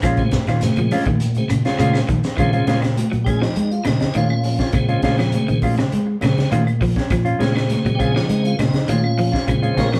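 A hypnotic, driving afrobeat groove opens on a Bbm7 chord, with a crunchy breakbeat kit of high-tuned snare, tight kick and hi-hat sounding saturated and gritty under a rolled-off top, alongside a round, fingered electric bass. Two electric guitars join them: one at the edge of break-up picks arpeggios in the background, while a dark, clean guitar plays fingered stabs. Woody claves, grainy shekere and very quiet, ringing congas played with soft hands fill out the percussion, with the shekere dropping away at 2.4 seconds. A piping, scooped tonewheel organ enters at 0.2 seconds through a slow rotary speaker and takes a solo from 2.4 seconds onward. The whole band sounds as if playing live in one large studio room with moderate reverb, in this short cut from a longer piece.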